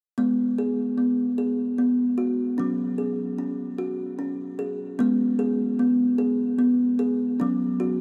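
A solo kalimba enters at 0.2 seconds with a woody, ringing thumbnail pluck, placed up front in this short cut from a longer meditative world piece in a gently swung 3/4. A diffuse ambient delay trails its notes into a cathedral-sized reverb within a dark production, as the harmony moves from G#m to F#5 and then repeats that move once more. A second section begins at 5.0 seconds, and the hypnotic, unhurried mood holds until the kalimba stops at 8.0 seconds.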